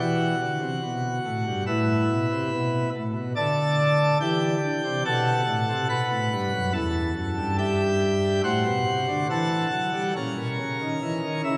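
Moving in a free, rubato 4/4 at about 71 BPM, this solemn, dark chorale-style classical piece is cut from a longer work. A solo pipe organ on a full plenum fills the 11.6 seconds, its brilliant mixtures and baroque voicing stretching from E2 up to B5 and sounding up front. The harmony opens on E minor, passes through G5 over D and a bare B5, and returns to E minor at 6.7 seconds. It then darkens through F#m7b5 over A and closes on a rootless F#7 over A# at 10.2 seconds, leaving the phrase unresolved. The listener seems to stand further back in a church, where a wet reverb with a 2.9-second decay lets each chord bloom and linger under the vaulted space.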